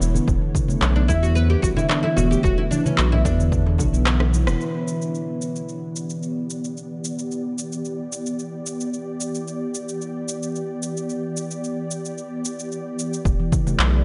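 A straight 4/4 pulse at 111 BPM drives this meditative organic downtempo excerpt in E dorian, with an overdriven electronic shaker, handclaps and rim click in studio reverb, a punchy electronic kick, soft-handed bongos and congas in the background, and a round, deep analog bass pumping up front. Over a Bmadd9/E chord, a ringing steel handpan plays arpeggios and a woody, fretless oud carries the plectrum-plucked melody with tape echo, while an ethereal, airy pad holds detuned sustained chords with chorus and pumping. The kick drops out for a drum fill and a band accent at 4.5 seconds. The music then moves to Em7, where the pad's filter sweeps over the shaker, handclaps and rim click until the groove returns near 13.3 seconds.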